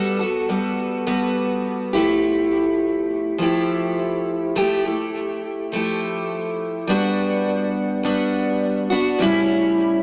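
Sunny and laid-back, this indie pop excerpt moves at an easy 103 BPM in straight 4/4, set in G lydian. A picked, plugged-in steel-string acoustic guitar carries the entire excerpt alone from 0.0 to 10.0 seconds, its full-bodied dreadnought tone sitting up front in the mix. Subtle chorus, a vibrato effect and analog delay color the guitar, lending its warm Gmaj9 and Fmaj9 chords a gently shimmering quality. Around 6.9 seconds the harmony shifts to Gmaj7 before turning to A7 near the close. The dreamy mix is soaked in a long plate reverb and carries a small-speaker character, giving the sound a hazy, lo-fi glow.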